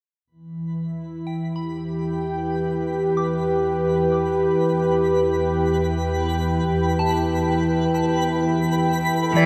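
A vast, echoing reverb surrounds this serene ambient fragment at 63 BPM on E minor, where a smooth, detuned sawtooth pad with chorus and a filter sweep holds sustained chords up front, a bowed double bass section fades in beneath it, a twinkling, sparkling granular texture fades in alongside a soft FM synth bell playing arpeggios with phaser and diffuse delay, and a clear, focused cello melody enters just at 9.3 seconds.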